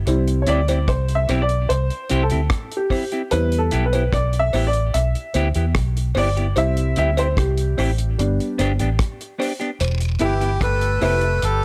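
Laid-back and sunny, this roots reggae excerpt sets a woody, up-front upright piano with plate reverb taking a solo of stabs over a round, foam-muted electric bass, a dry, tight-kicked drum kit with a rolled-off top and dub echo, background cowbell and jawbone-type rattle, and a clean semi-hollow electric guitar with tape echo, before a reedy, breathy melodica and a smooth, lightly vibrato-tinged horn section in the background enter at 10.2 seconds.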